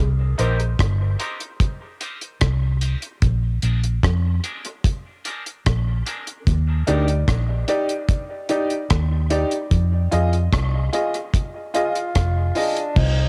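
Spacious and meditative, this dub reggae fragment at 74 BPM in C minor sets a round, foam-muted vintage electric bass with transformer saturation and a dark, dry reggae drum kit with a tight kick, hi-hat, rim click and crash up front, while a slightly broken-up electric guitar and a woody, slightly detuned upright piano add high-passed stabs and accompaniment soaked in dub echo over Cm7, Bb7, Ebmaj7 and Fm7, a filter sweep colours the opening 6.5 seconds, the guitar stops at 7.1 seconds, and a breathy, distant tenor saxophone with light vibrato enters at 11.8 seconds, all carrying the hazy feel of a home cassette recording in a small room.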